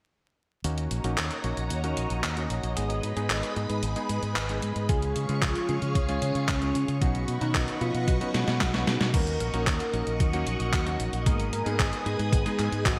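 This italo disco excerpt moves at 113 BPM in a straight 4/4, danceable and melodramatic in Eb minor, with a clean 12-bit digital drum machine laying down hi-hat, handclaps, crash cymbal and a medium-tuned snare from 0.6 s, its sampler-style hits tape-warm and re-recorded in a large room. A punchy, up-front fingered electric bass runs through an envelope filter beneath, while a clear electric grand piano with a clangy low end and short sustain plays stabs roughened by vintage 12-bit sampler grit and a low-pass filter. Above them, a swirling sawtooth string machine holds slow-attack chords shimmering with ensemble chorus and phaser, moving through Ebm7, Abm, Db and Badd9. A thumpy electronic kick arrives at 4.9 s alongside a thick, detuned unison lead, its dark sawtooth and triangle tone with a sub octave and vibrato carried on a digital delay. A drum fill at 8.3 s leads into the second section at 9.1 s, and the whole production sounds bright and 1980s-styled, set in a lush hall reverb with a layer of vinyl crackle.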